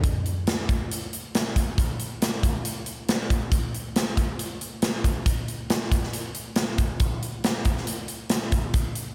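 A big acoustic rock drum kit of hi-hat, punchy kick and medium-tuned snare drives a swaggering, gritty straight 4/4 groove at 138 BPM, sitting up front in a lush hall reverb for the full 9.1 seconds of this passage cut from a longer piece.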